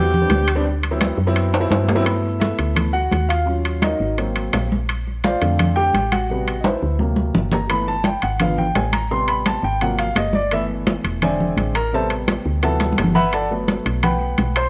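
A woody upright piano takes a solo from 2.1 s in this sunny, danceable Afro-Cuban jazz excerpt at 170 BPM in G major, after a vibrato-rich tenor saxophone with scooped notes opens on a lone G4 until 0.7 s, while a round, dark FM bass, bright damped congas and ringing metal-shell timbales drive the straight 4/4 feel through a moderate echo-chamber reverb over chords such as Am11, D13 and G69.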